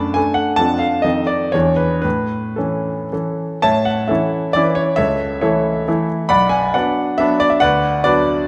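A clear, intimate grand piano plays solo and up front, its action noise audible, in a graceful, proud romantic classical dance in triple time with dotted rhythms and flexible rubato, set in the wet reverb of a scoring stage and cut from a longer piece.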